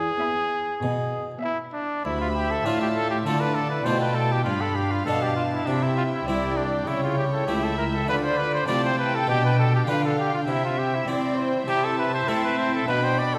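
A bright solo trumpet leads up front over a dark, up-front cello section and a plucked Italian-style harpsichord in this stormy, driving baroque-style concerto excerpt at 100 BPM, with period-style gut-string violin sections (one rich and smooth-topped on the second line, one warm and reedy in the background carrying the high melody) and a distant, dark viola section joining at 0.2 seconds, all washed in a concert-hall reverb as the harmony moves from D minor through G7 to C.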